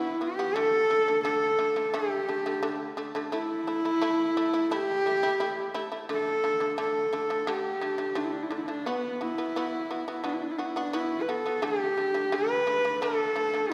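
A husky, biting horsehead fiddle carries the melody up front, bowed with light vibrato and portamento in this proud, vast Mongolian folk piece at 87 BPM in 4/4, set in the D zhi mode. Beneath it, a bright, buzzing shamisen plucks percussive arpeggios over chords moving through B5, D5 and A5, with both parts playing for the full 13.7 seconds. A generous hall-like reverb of about 1.6 seconds gives this cut from a longer piece a spacious, open air.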